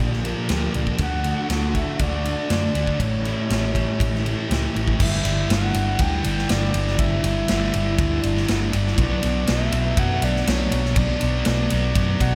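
This blissful, hazy excerpt of shoegaze-tinged dream-pop rock opens with a shimmering, octave-doubled, fingerpicked twelve-string acoustic guitar playing arpeggios through lush chorus and delay, a dark, up-front fuzz guitar riff, a round, foam-muted vintage electric bass and a slightly broken-up, lo-fi electric guitar riff with reverse reverb that drops out at 5.0 s, while a natural-sounding rock drum kit with a tight kick, crash and ride joins at 0.1 s and a breathy, flute-like synth lead with vibrato carries the melody from 1.0 s, the mix soaked in a dreamy hall reverb.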